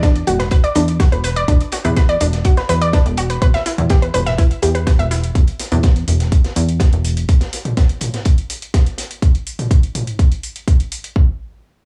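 A straight 4/4 pulse drives this dark, dramatic melodic techno drop, anchored by a punchy, layered electronic kick that sits up front and carries through to 11.3 s. A techno drum kit adds metallic hi-hats and toms re-recorded in a small room, while a crunchy breakbeat kit lurks in the background with a saturated, medium-tuned snare and rolled-off top, its hats sidechain-pumped and its hats, snare and room all high-pass filtered. Underneath, a funky, plucky analog bass blends sawtooth, square and sine waves with ring modulation and wave-folding, its fast filter pluck pumping against the kick until it stops at 7.3 s. Up top, a lush unison pluck of detuned saws spins arpeggios through tape echo and sidechain pumping, dropping out at 5.1 s as the harmony moves from Bm/E to E5 before falling away to bare rhythm. The dry, gritty hardware sound and small room ambience keep this cut from a longer piece tight and close.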